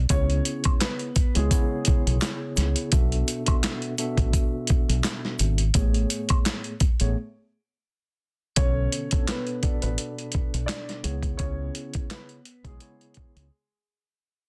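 Boom-bap hip-hop with a reflective, moody cast and a swung 4/4 pulse, built on a gritty, compressed sampler-style kit with a thumpy kick, medium-tuned snare, hi-hat and handclaps sitting up front beside a round, punchy dub bass. A mellow tine electric piano colours the cassette-tinged background with chords moving from C#m7 through E9sus4 and Amaj7, while a dark, woody upright piano carries the melody through tape echo in brief phrases, returning at 8.6 seconds. An egg shaker and woodblock tick quietly in the background until 7.0 seconds, a short break follows, and the second half fades away in this cut from a longer piece.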